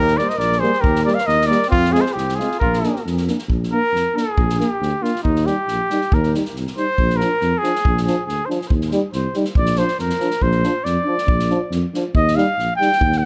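A mellow, close-miked cornet with tape echo leads up front over a warm flugelhorn second line and a distant, roomy tuba bass, joined by an acoustic drum kit with punchy kick, medium-tuned snare and bundle sticks, plus two lightly vibrato euphoniums, one clear and vintage, the other smooth-topped, in this exuberant, wild Balkan brass band piece at 138 BPM in 2/4, set in Bb mixolydian, with the flugelhorn dropping out at 3.0 seconds and the cornet taking a classical-style solo from 3.5 seconds over Eb and Bb chords in a moderate studio ambience.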